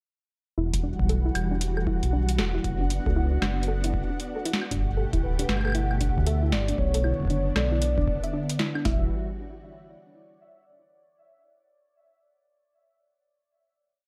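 IDM at 116 BPM in E dorian, this glitchy and intricate piece rides a swung sixteenth-note groove over a dark, warm production with light digital ambience. A booming analog drum machine sets a broken, overdriven pattern of deep kick and crisp snare, while a second overdriven kit adds metallic hats, a high woodblock and snare with tape echo, glitched into an ever-changing beat. Underneath, a round analog bass sits up front with a skipping, syncopated line, as a silky vintage string machine holds mellow, chorused chords through Emadd9, D6/F#, Gadd9 and Bmadd9. A soft, gentle pluck with a moving notch filter loops a five-step arpeggio that drifts against the bar through chorus and digital delay, and a bubbling, resonant texture holds a high F#5 in the background with random filter steps and its own reverb. At 5.2 seconds a velvety synth lead enters with a smooth, detuned unison tone, vibrato and delay, singing motif-based phrases before everything settles on a final Emadd9 chord at 8.9 seconds.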